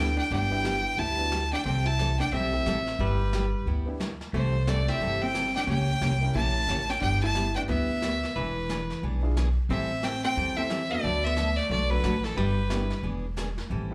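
A swung 179 BPM western swing tune in G major carries this down-home country excerpt, where a bright, biting fiddle with light vibrato leads up front over a dark, clean archtop guitar second line, a picked dreadnought acoustic, a clear upright piano in the background (all four touched with slapback echo), a woody pizzicato upright bass and a brushed vintage kit entering at 0.3 seconds, all heard through a club PA with little reverb, until the fiddle and archtop stop at 13.0 seconds.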